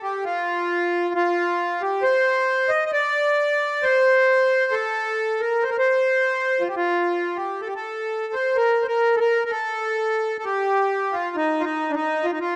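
Dark, warm production places a lone accordion up front in a recital hall, with a 1.6-second reverb lingering around its reedy, slowly beating tone. This haunting, longing Celtic folk excerpt moves in a rubato 3/4 at roughly 60-68 BPM. The accordion plays solo for the full 12.6 seconds, ranging from D4 to Eb5.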